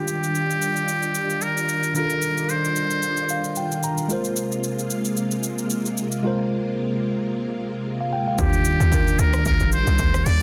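A swung, overdriven deep house drum kit of punchy kick, hi-hat, rim click and shaker carries this soulful, relaxed amapiano cut, where a worn, slightly out-of-tune tine electric piano and shimmering string machine violins with ensemble chorus and sidechain pumping hold the chords under a breathy, buzzy muted trumpet with digital delay, until the hollow, bouncy log drum bass arrives with the drop at 8.4 seconds as the trumpet returns.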